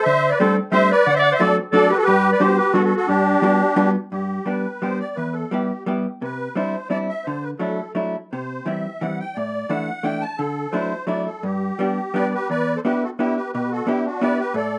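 A 3/4 waltz at 173 BPM, played with a rubato feel, sets up this charming, whirling musette piece in G major, tuned to A4 = 435 Hz and cut from a longer performance. A reedy, shimmering musette accordion with its wet, musette tuning carries the melody up front for the whole 14.8 seconds. A clear, vintage-toned clarinet in classical style adds a second line in the opening moments and stops at 3.9 seconds. Underneath, a dark, clean, picked electric hollow-body jazz guitar, compressed and close in the mix, supplies the accompaniment from low E2 up to G4. The harmony drifts from D7sus4 and D7 to Gmaj7, wanders through Em, Cadd9, Asus4 and Dadd9 in the middle stretch, then returns to the opening material at 12.5 seconds on Em7. A short, wet studio reverb surrounds the parts in a rough home-demo mix.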